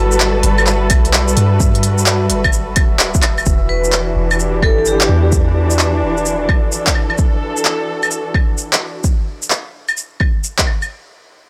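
Future garage with a rainy, wistful mood and a swung 4/4 feel, cut from a longer piece, with veiled, muted strings holding sustained chords under vintage sampler grit and sidechain pumping, joined in the opening by a soft, round 808-style bass and by a glassy, drifting harmonics texture in the background that lasts until 3.5 seconds. Up front, an overdriven electronic kit of claves, handclaps, smooth hi-hats and shaker arrives at 0.1 seconds, joined by a deep kick at 0.9 seconds, and once the chords move from Gmaj9 to Em9, a bright, ringing vibraphone struck with hard mallets adds a brief tape-echoed phrase in the background. The sound is dry and gritty, with transformer saturation and a digital ambience.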